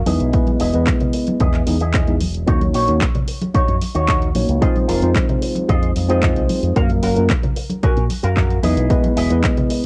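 A tine electric piano sits up front from the opening moment, worn and slightly out of tune, lightly overdriven and pumping against the kick, its tape echo smearing over chords that move from Emaj7 through Ebm7, Fm7 and Gbmaj7 before returning to Emaj7. This nu-disco excerpt, cut from a longer piece, feels cosmic and sleek, riding a steady straight pulse. A round fingered electric bass with an envelope filter anchors the low end, while a bright, twangy electric guitar, also through an envelope filter and carrying a subtle chorus, picks a compressed riff as a filter sweep moves across it for the whole passage. A punchy electronic kick drives underneath a house kit of handclaps and hi-hats, both tape-softened, and congas with thick skins and soft hands tap along in the background. The whole thing carries the hazy character of a home cassette recording in a snug booth ambience.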